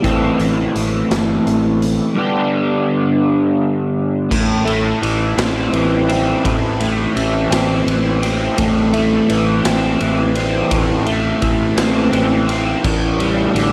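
A moderate echo chamber reverb with a two-second tail surrounds this short cut from a longer psychedelic rock piece, giving it a mysterious, hypnotic air. It moves in a slow 6/8 at 56 BPM counted in dotted quarters, with a straight feel, in A minor. Up front, a crunchy, double-tracked overdriven electric guitar plays a picked riff through a rotary speaker, spanning G2 to A4. Beneath it, a round, fuzz-soaked fingered electric bass holds the low end between G1 and A1. A raw garage drum kit in a bright stone room, with a pumping room sound, a boomy kick, a medium-tuned snare and a gritty, rolled-off top, plays crash, ride, hi-hat, kick and snare throughout. The harmony moves from Am to G, settles back on Am as a new section begins at 4.3 seconds, and turns to A7sus4 at 12.8 seconds before the clip ends.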